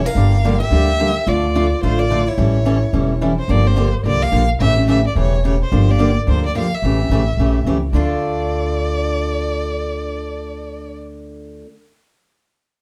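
Bittersweet and fiery, this short excerpt of acoustic string swing in D minor races at 216 BPM with a swung feel, as an expressive bowed violin sings the melody with vibrato and portamento until 10.9 seconds, a boxy parlour guitar adds a background second line that stops at 3.2 seconds, a woody, thumpy pizzicato upright bass sits up front, and a bright, full-bodied dreadnought guitar drives the accompaniment through chords from Gm to A7b9 and back to Dm, all placed a little further back in a small, reverberant room.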